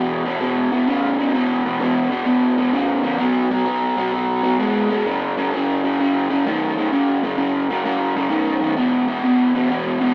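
Swaggering and gritty, this short rock excerpt cut from a longer piece moves at 129 BPM in 4/4 with a 67% swing on the eighth notes, tuned slightly sharp to A4 = 445 Hz. A lone raw garage guitar carries the whole 10.1 seconds: electric, picked and double-tracked, its overdriven, lo-fi tone sits up front with a tape echo, working through power chords on E, B and F# in the low register. The rough rehearsal-room sound is framed by a moderate studio reverb.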